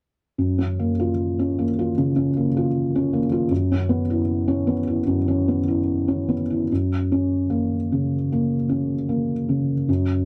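Classical and hopeful yet tender, this brief passage cut from a longer piece drifts at a rubato 76 BPM in F# major, where a felt-muted upright piano, dark, intimate and thick with felt, sits up front with light reverb in a dry, close 1970s-style studio sound, moving from F#maj7 to C#m7/F# before settling on F# at 6.7 seconds.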